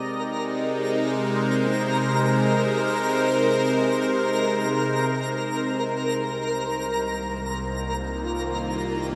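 An evolving wavetable pad sits up front with bright, detuned, morphing sustained chords colored by phaser, moving from Abmaj7/C to Ebadd9/C at 5.8 s in this serene, reflective ambient passage in 3/4, cut from a longer piece. Beneath it, a very quiet felt-muted upright piano plays soft, intimate arpeggios with audible action noise, while a twinkling granular texture adds a sparkling octave-up shimmer. The whole passage floats in a huge, wet ambient reverb with a long 7.1-second tail.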